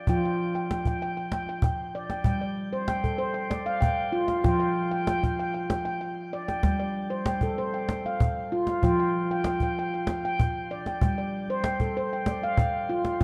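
A dark, warm production sits in a wet echo-chamber reverb, framing this gentle, calm clip of meditative world music in 7/8 at 192 BPM counted in eighths. Up front, a mellow, ringing stainless-steel handpan played with soft fingertips spins arpeggios between F3 and G5, its vintage, band-limited tone trailing a shimmer reverb as the harmony moves from Dmadd11/F through alternating G5 and Fsus2. Close beside it, an acoustic cajon adds woody hits with faint snares from 0.1 seconds onward.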